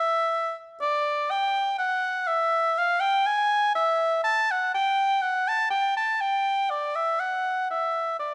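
Heard close and up front in a moderate recital-hall reverb, a clear solo oboe with light vibrato plays this short, radiant, dance-like passage cut from a longer baroque-style classical fantasia, moving between D5 and A5 in a rubato 3/4 at around 61 BPM from 0.0 to 8.3 seconds.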